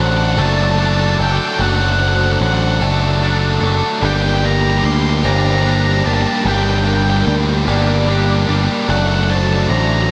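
A cathartic, melancholic post-rock passage in a slow 6/8, cut from a longer piece, opens on an overdriven, growling picked bass and a bright, tight distorted guitar riff up front, alongside a dark octave-fuzz lead melody carrying slapback echo and digital delay, faint twangy clean arpeggios, ringing hard-mallet vibraphone arpeggios with slow motor vibrato set back in the mix, and distant bowed chamber strings holding very quiet sustained chords, before a compressed fuzz guitar riff slips in behind at 4.0 s, all moving from D/F# to Gm and back within a lush hall reverb that gives a big arena sound.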